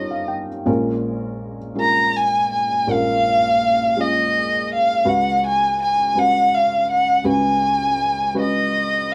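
A single bowed violin carries the melody from the start, its dark, expressive tone colored by vibrato and portamento, sounding distant yet placed up front in the mix. Beneath it, a felt-muted upright piano supplies the accompaniment across the full 9.1 seconds, its soft, smooth, mellow voice giving the piece an intimate, vintage character. This is an acoustic folk-pop ballad in 6/8 with a straight feel, tuned to A4 = 436 Hz, and the mood is heartbroken and melancholic. The harmony opens on D#7/G, settles onto A#m7 at 0.7 seconds, and moves to C#7sus4 at 5.1 seconds, the passage being cut from a longer piece. A moderate studio reverb surrounds the two instruments, lending a sense of space.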